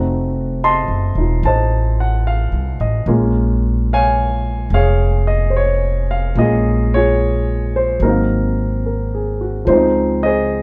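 A moderate studio reverb places this short cut from a longer piece a little back in the room, though the warm grand piano and the upright bass both sit up front. It is a smoky, wistful jazz ballad in Bb minor at 73 BPM in 4/4 with a swung eighth-note feel, the piano accompanying over chords that move from F7b9 to Bbm7, then Ab13 at 8.0 seconds and Dbmaj9 at 9.7 seconds. Beneath it, the pizzicato upright bass on steel strings gives a woody, dark, thumpy low end throughout.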